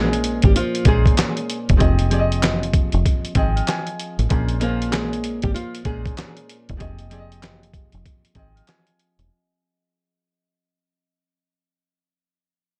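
Up front in the mix, a sampler-style trip hop drum kit sits pitched down and compressed, with a thumpy kick, a medium-tuned snare, handclaps and hi-hat carrying a gritty, tape-warm grit into this dark, moody boom-bap hip-hop cut from a longer piece. Underneath, a deep dub fingered electric bass plays low and round, its foam-muted tone direct and amped. A mellow Celtic harp fingerpicks ringing accompaniment across a broad range, sounding on until the 11.4-second mark, after the rest of the band has finished. A bright, fingerpicked flamenco guitar carries the melody through a tape echo, finger squeaks audible, until it drops out at 6.1 seconds. The harmony moves between Bbm7 and Fm7 over a swung sixteenth-note groove, and the dry recording fades out over its first 9.3 seconds.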